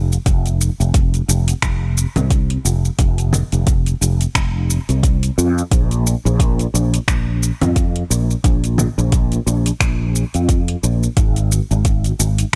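A dry, up-front mix carries this meditative, earthy organic downtempo excerpt at 88 BPM in F minor pentatonic with a light 16th-note swing: a round, punchy fretless electric bass opens at 0.0 seconds with ensemble chorus and sidechain pumping, a layered, overdriven deep house kit of congas, finger snaps, metallic hi-hat and shaker joins at 0.1 seconds, and a deep, overdriven electronic kick drum arrives at 0.3 seconds.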